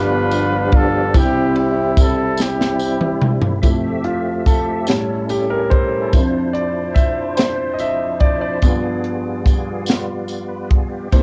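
Slow gospel in 6/8 at 48 BPM, reverent and hopeful, heard as a short cut from a longer piece with a light reverb and the soft grain of a home cassette recording. A dark, smooth-topped horn section carries the melody with vibrato over the opening 3.6 seconds, its tape-tinged tone sitting up front with plate reverb. Beneath it a warm concert grand piano with deep bass and long sustain provides accompaniment throughout, then takes a solo from 3.6 seconds to the end as the chords move through Fmaj9, A7, Dm9/F and G7b9. A bright, reedy tonewheel organ holds sustained chords in the background, colored by a slow rotary speaker, chorus vibrato and audible key click. A crisp, polished fusion drum kit with a punchy kick, high-tuned snare and dark cymbals enters at 0.3 seconds and plays a fill before the horns stop, joined by a jingly tambourine sitting far back in the mix.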